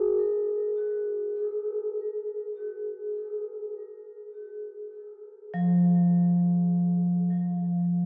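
Serene and spacious, this brief ambient fragment in free time, cut from a longer piece, features a solo vibraphone played with medium mallets, its metallic, ringing tone sitting up front with the motor off and an airy quality, trailed by a diffuse ambient delay. The vibraphone moves between F3 and Ab4 over an F minor chord from 0.2 seconds until the harmony falls away at 7.3 seconds, tuned to A4 = 442 Hz. A wet concert hall reverb surrounds it, and the worn, warbling character of old cassette tape adds a warbly pitch drift across the 8.1-second passage.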